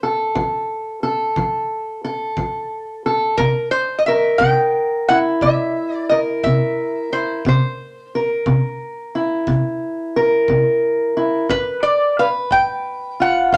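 A rollicking, swaggering stretch of acoustic country blues in 12/8 opens with a metallic, nasal lap resonator guitar played with slide and fingerpicks carrying the melody up front over a dark, boxy parlour-style fingerpicked steel-string acoustic guitar moving from F to C7 and on to G7, while a tight, airy kick drum played with brushes sits in the background from 0.4 seconds, all in a small club-like reverb.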